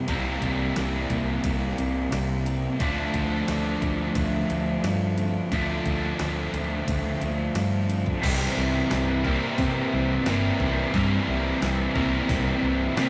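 A straight 4/4 pulse at 88 BPM comes from a detuned 8-bit digital drum machine, whose thumpy kick, medium-tuned snare, hi-hat, ride and crash cymbals have a tape-warmed, sampler-style character. This short cut from a longer rock piece leans into shoegaze and dream pop, blissful yet wistful, in C mixolydian, moving from C7 to Dm7 at 2.8 seconds and returning to C7 when a new section arrives at 8.2 seconds. Up front, a bright, double-tracked cranked stack guitar plays an overdriven riff. Behind it, a thick fuzz guitar adds a dark, distorted riff, and an overdriven semi-hollow guitar contributes a hollow-body riff until it stops at 8.2 seconds. A very quiet clean electric guitar picks arpeggios, while a vintage foam-muted fingered bass gives a round, punchy, amped low end. The rough rehearsal-room recording carries tube saturation and a wet small-room reverb.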